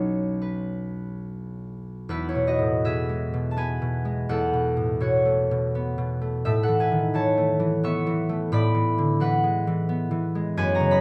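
Peaceful and dreamy, this short excerpt from a longer classical piece features a solo concert harp in 3/4, played with a loose, rubato feel. The fingerpicked harp sounds acoustic and ringing, sitting up front in the mix and spanning from a deep B1 up to a high C#6. A brief opening phrase rests on a Badd9 chord before the music moves into a new passage at 2.1 seconds. Open, suspended harmonies follow: Eadd9, Bsus2/E, Aadd9 and E9/A. Close, detailed microphones and a light reverb give the instrument an intimate, softly glowing presence.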